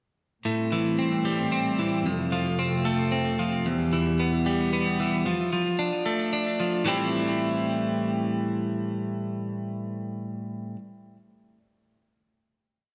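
In a straight three-beat lilt, this cathartic, melancholic rock piece puts a clean, compressed twelve-string electric guitar up front, picking arpeggios through spring reverb and digital delay, over a smooth, bowed studio string section whose vibrato-tinged sustained chords sit further back until 5.2 s, after which the guitar carries on alone to a final Am7 at 6.9 s, inside a large, wet studio reverb.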